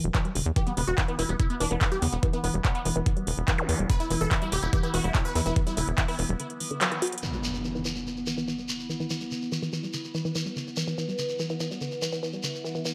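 A woody, wave-folded pluck carries the riff throughout this psychedelic trance excerpt, its dark, percussive tone colored by chorus, digital delay and sidechain pumping while a filter sweep moves over it. At 144 BPM in E minor with a straight 4/4 feel, the opening drives on a knocking electronic kick, a drum and bass kit of handclaps and metallic hi-hats with tape-like warmth, and a tight, punchy sequencer bass with tube saturation, all placed up front. A bright, detuned supersaw stab adds a punchy melody with phaser and delay, and an overtone-sweeping drone rises in from 1.5 s, its resonant, slowly shifting chords bathed in chorus, phaser and built-in reverb. After a band accent and drum fill, an electronic impact lands at 7.2 s. The bass, kick and stab have already dropped away, and the drum kit falls away just after, leaving the pluck and the filter-swept drone with a grainy, mellow shekere recorded in a live room. 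The mood is psychedelic and alien, framed by a light reverb.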